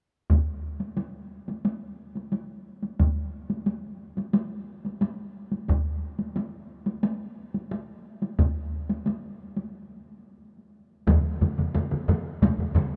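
A hard-stick taiko ensemble sits up front in a live room and drives this short excerpt of Japanese traditional drumming, carrying the ceremonial pulse at 89 BPM in a straight 4/4. Alongside it, a second taiko ensemble struck with heavy sticks sounds tighter and more boxed-in, as if captured in a small room. The opening stretch holds a steady, driving feel until a break at 9.7 seconds halts the momentum. At 11.1 seconds the music resumes in a new section, and two further taiko ensembles join: one with hard sticks and live-room ambience, the other heavy-sticked, compressed and saturated, pushed up front with a gritty, dense punch. Light reverb ties the acoustic drums together, and the passage breaks off just after this fuller entry, as it is cut from a longer piece.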